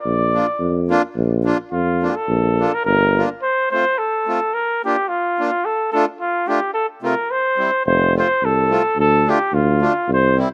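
A clear, vintage-toned flugelhorn carries the melody up front in this festive, jolly alpine folk dance at 108 BPM in a lightly swung 2/4, moving from Bb major to F major, with a present tuba bass that pauses at 3.2 seconds and returns at 7.9 seconds, and a reedy, dry-tuned, close-miked accordion filling in the accompaniment, all captured as a rough home demo in a small room.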